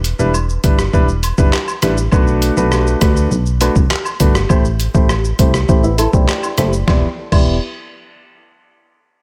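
A gritty, pitched-down, sampler-style drum kit sits up front in this hypnotic, sultry dancehall excerpt at 101 BPM in E minor. Its thumpy kick, medium-tuned snare, hi-hat, rim click, handclaps, shaker and crash have a compressed character, as though re-recorded in a small room. Underneath, a round, punchy FM bass with a fast attack and decaying, mellow tail holds the low end. A clear, polished concert grand piano, also up front and softened by a low-pass filter, carries the accompaniment through Em7, Bm7 and Am7 with deep bass and long sustain. Cabasa and woodblock add acoustic texture in the background. At 5.8 s a fingerpicked flamenco guitar, complete with finger squeak, briefly plays arpeggios through a low-pass filter and digital delay, while a filter sweep runs across the opening before the music returns to Em7 at 6.9 s, all set in a digital ambience.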